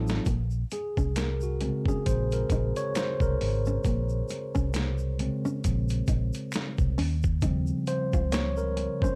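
R&B with a neo-soul lean, this introspective, sultry excerpt sits at 67 BPM in Bb minor with a swung sixteenth feel, opening on a drum fill before a mellow tine electric piano takes a solo from 0.3 seconds over Bbm9, moving to Eb13 at 7.0 seconds. Up front alongside the clean keys are a dark, round, foam-muted electric bass and a dusty sampler-style kit, gritty and overdriven with a thumpy kick and medium-tuned snare. A full-bodied fingerpicked nylon-string guitar carries a second line, while a close, dry tube shaker and finger snaps sit low in the mix, all in a dry room with little reverb.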